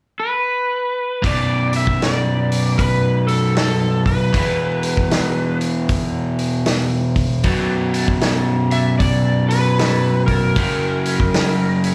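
A swung 4/4 groove at 77 BPM drives this heavy, smoky blues rock and southern rock power-trio piece in B minor, heard as a live club gig through the venue's PA. An overdriven slide guitar with slapback echo opens alone at 0.2 seconds. At 1.2 seconds a double-tracked, compressed electric guitar riff and a gritty, saturated vintage drum kit with a tight kick and rolled-off top join, moving from Bm through E5 and Bm7 to F#7, while a thick tonewheel organ with third-harmonic percussion and a slow rotary speaker sits in the background from 7.4 seconds and adds a short fill at the close.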